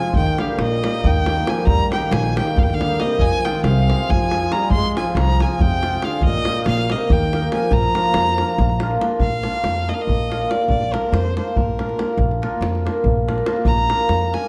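A dark, warm production set in a moderate recital hall reverb frames this exuberant, festive Balkan wedding-band cut, and it gathers speed throughout. In a straight 7/8, a rich, smooth-topped bowed violin carries the melody with vibrato in a smooth, even line, while a trombone adds a second line in a classical style with light vibrato. Beneath them, a hammered cimbalom provides shimmering, ringing accompaniment, a woody pizzicato upright bass with steel strings anchors the low end, and a deep, compressed, saturated davul drives the percussion. The trombone drops out at 8.8 seconds, and from 9.2 seconds the violin steps forward into a solo over the cimbalom, bass and davul. The harmony moves through Eb, Fm, Eb and Bb in this section, which is cut from a longer piece.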